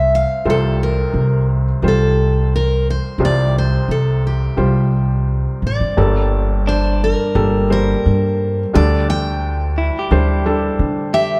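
A straight 4/4 pulse carries this intimate, reflective acoustic folk-pop ballad, where a full-bodied, picked steel-string acoustic guitar sings the melody over soft, felt-muted upright piano accompaniment with audible action noise and a woody, thumpy pizzicato upright bass up front, until a bright, twangy clean electric guitar with harmonic tremolo adds arpeggios from 6.7 seconds, within light reverb and a dark production.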